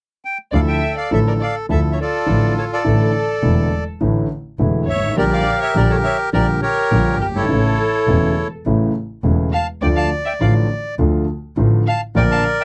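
In a rubato 4/4, this sultry, passionate tango excerpt opens with a reedy, bright bandoneon carrying the melody up front from 0.2 seconds, joined at 0.5 seconds by a bowed studio violin section playing a focused second line with vibrato. Beneath them, a vintage concert grand piano with deep bass and audible action noise supplies the accompaniment, while a single bowed double bass, dark and soft in attack and played sul tasto, holds the low end. The recording has a dry, close 1970s-style studio sound with light reverb, and the harmony moves from Dmadd9 through Asus4, Gm/Bb and A before settling on Dm.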